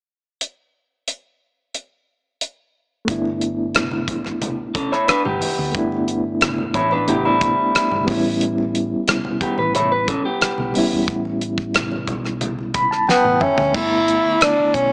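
Smooth and warm, this excerpt of lush 1970s-style soul moves at a relaxed 90 BPM in 4/4, set in G lydian. A dry, damped drum kit opens alone at 0.4 seconds, up front with a fat snare, tight kick, rim clicks, toms and dark cymbals. Around 3 seconds a gritty, overdriven reed electric piano with fast tremolo arrives over a G6 chord, joined by a round, punchy hollow-body bass and distant, low-tuned congas sitting in the background of a large room. An electric guitar through a small old amp plays a slightly broken-up, picked riff up front from 4.8 to 11.2 seconds, while the harmony shifts to A9 at 8.1 seconds. During the piano and drum fills, a breathy, whispered tenor saxophone enters at 13.1 seconds with vibrato and a soft attack, close and intimate in a jazz style, before the harmony returns to G6 at 13.7 seconds. Light studio reverb and a small-speaker sound colour the mix.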